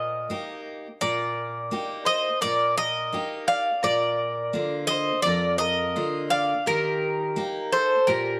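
A metallic, up-front Greek bouzouki carries a brooding, bittersweet melody from the opening moment over a woody mandolin second line and a full-bodied picked steel-string acoustic guitar accompaniment, in this short Greek folk bouzouki-band passage at 85 BPM in a straight 4/4 moving from Eb to Bb at 3.8 seconds and back to Eb at 6.7 seconds, set in a small room with light reverb.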